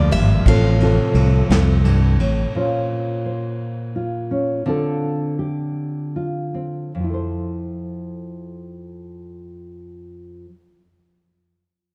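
A dark, full-bodied nylon-string guitar carries this hopeful, nostalgic acoustic folk-pop ballad. Up front and thumb-plucked in a deep classical tone, it plays the accompaniment until 10.6 seconds. The piece moves in a slow, straight 6/8 in F major, at 48-58 BPM counted in dotted quarters. A bright, boxy picked archtop guitar sounds a brief melody, with audible finger squeak, that ends at 1.2 seconds. Beneath it, a round, punchy fingered electric bass sits up front. A vintage brush kit adds kick, snare and dark ride cymbal in a natural studio room, and a veiled, con sordino string section holds bowed chords with vibrato in the background. Bass, drums and strings all fall away by 2.5 seconds, leaving the nylon guitar alone as the tempo slows through the middle stretch. The harmony moves from F/A to Bbmadd9, then Dm7, and settles on Fmaj7. The mix has light reverb and a dark, warm overall production in this excerpt.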